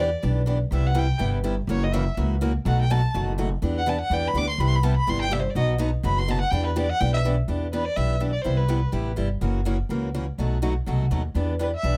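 A brisk swing at 248 BPM in 4/4 drives this bittersweet jazz manouche cut in E minor, with a woody, thumpy pizzicato upright bass on gut strings sitting a little louder than the other parts. A bright, boxy picked steel-string acoustic guitar accompanies throughout, while a single bowed violin takes an expressive solo from the start through 7.5 seconds, singing with vibrato and portamento, then plays on until 9.1 seconds before returning briefly at 11.6. The close, detailed sound carries little reverb, keeping the trio intimate and dry.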